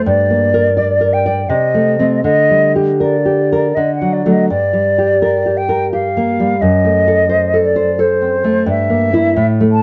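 A mellow silver concert flute, airy and soft-edged with expressive vibrato and plate reverb, sings a solemn, elegiac melody in G minor over a dark, full-bodied, fingerpicked nylon-string guitar in this short fragment of a romantic duo, moving in a rubato 3/4 at roughly 78-89 BPM through chords such as Gm, D and F#dim7, all heard through worn, warbling cassette tape with pitch drift and a dulled top end.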